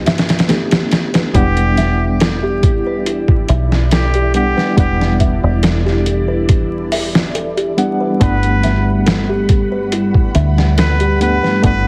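A straight 4/4 pulse at 70 BPM from a gritty, pitched-down sampler drum kit with a thumpy kick anchors this melancholic, smoky trip hop excerpt in E minor. Alongside it, a round, foam-muted dub bass and a reedy, slightly out-of-tune electric piano with fast and harmonic tremolo move from Gmaj7 to Em7 and back at 8.2 seconds, while a delicate music box plays arpeggios through 12-bit sampler grit, a low-pass filter and tape echo. From 1.3 seconds a nasal, straight-muted trumpet sings a jazz-styled melody with vibrato and scooped notes over sustained sawtooth string-machine cellos colored by phaser and ensemble chorus, and the mix is squeezed into a heavily compressed radio sound with vinyl crackle and light reverb.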